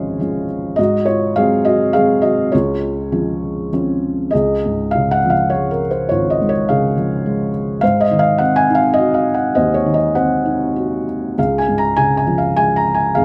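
Hopeful and relaxed, this lyrical classical excerpt in Db major features a solo felt-muted upright piano, its thick felt giving a soft, dark, intimate tone heard up front through close, detailed microphones with light reverb, moving at 102 BPM in a rubato 3/4 across a range from Ab1 to Bb5 as the harmony drifts from Db and Dbmaj7 through Ab7 before settling back on Db at 11.4 seconds.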